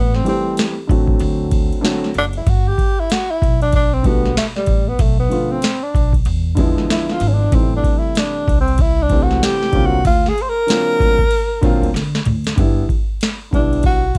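A breathy, whispered tenor saxophone solo opens this smooth, relaxed jazz-hop excerpt over growly pizzicato upright bass, soon joined by a booming, overdriven analog drum machine with a deep kick, crisp snare and metallic hats, and a dark, mellow grand piano whose action noise is audible. The close-miked saxophone sits up front with vibrato, subtone and scooped notes, moving through jazzy seventh chords in a swung groove, all in a light reverb. A drum fill at 11.9 seconds ends the solo, and the clip settles onto a G6 chord at 12.6 seconds before it cuts off.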